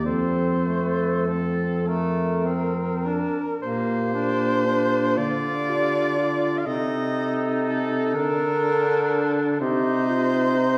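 Classical and lyrical, this serene passage for single-reed quartet drifts in a slow, rubato 6/8 in B-flat major, taken from a longer piece and set in a recital hall heard from further back in the room. The clear soprano saxophone sings the melody with vibrato, up front and close, while the smooth-topped clarinet carries a second line beneath it. The tenor saxophone adds warm, roomy accompaniment with vibrato from a distance, and the mellow, vintage-toned baritone saxophone anchors the bass with light vibrato, as the harmony moves from F through B-flat to C minor and the music opens into a new section at 3.6 seconds.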